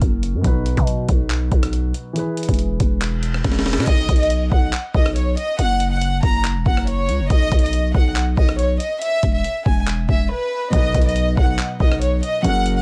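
Trap-flavored hip hop at 140 BPM in a half-time feel, this cut from a longer piece in B major sounds triumphant yet dreamy. A dark, mellow concert grand piano opens the passage in its lower register, and a growling, buzzy 808-style bass and a gritty, compressed breakbeat drum kit with a thumpy kick, high-tuned snare, hi-hat, handclaps, rim clicks and crash cymbal hold the groove throughout. An electronic reverse cymbal and a drum fill lead into the second section at 3.9 seconds, where the piano drops out and a soft-attacked violin section takes the melody, bowed sul tasto with light vibrato and a delay. The piano returns at 10.7 seconds, just after a brief break. The mix is dry and close, with the drums, bass and violins up front and the drums carrying a vintage 12-bit sampler grit.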